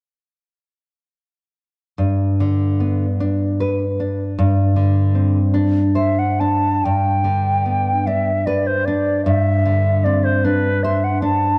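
Lilting in three with uneven, rubato beats, this tender and serene romantic duo for flute and classical guitar breathes freely rather than keeping strict time. The nylon-string guitar enters at 2.0 seconds with a full-bodied, fingerpicked accompaniment, its deep classical tone carrying a cassette-tape character as it moves from G to a suspended Gsus4. At 6.0 seconds the silver concert flute joins with the melody, pure and softly attacked, its gentle vibrato floating in a high, singing register. The second phrase returns to G before settling onto a hazy, rootless Am11 over G, keeping the harmony suspended and calm. Both instruments sit up front in a lush, wet hall reverb, while the home cassette recording rolls off the top end for a soft, rounded, slightly hazy sound. This is a short excerpt cut from a longer piece, ending at 11.6 seconds.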